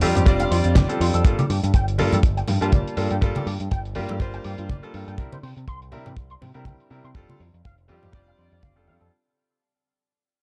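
This nu-disco excerpt has a close, dry sound with little reverb, and it fades out across its full 9.1 seconds. The mood is groovy and cosmic, with a swung sixteenth-note feel in 4/4, tuned to A4 = 436 Hz, and it moves through F6, Gm7 and C7 before returning to F6. A tight acoustic kick with a rolled-off top sits up front from 0.3 seconds, while a damped 70s kit adds low-passed hi-hats and a fat snare in a small room. Up front, a picked electric bass with an envelope filter plays with direct, amped brightness and sidechain pumping. Behind them, compressed, saturated congas and bongos struck with hard hands sit in the background, and a brilliant concert grand piano with deep bass and a present tone accompanies with pumping and tape echo. A clean, twangy electric guitar riff runs through an envelope filter, ensemble chorus, low-pass filter and tape echo, with a filter sweep running across the whole clip.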